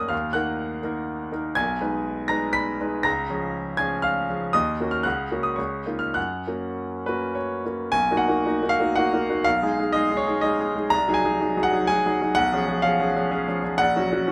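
A light reverb surrounds a bright, up-front grand piano with long sustain, close enough that the noise of its action can be heard. This short passage, cut from a longer romantic character piece for solo piano, has a warm, lyrical mood and moves in a triple metre shaped by rubato. The opening phrase begins in a minor colour, passing through D#m, G#m/B and C# before settling on F# near 6.2 seconds. At 7.9 seconds a second phrase opens on a rootless Bmaj7, moving through G#5 and G#7/B# to C# and closing on F#/A#. The writing spans the keyboard from a deep A#1 up to a glinting B6, and the polished, intimate tone keeps every voice clear.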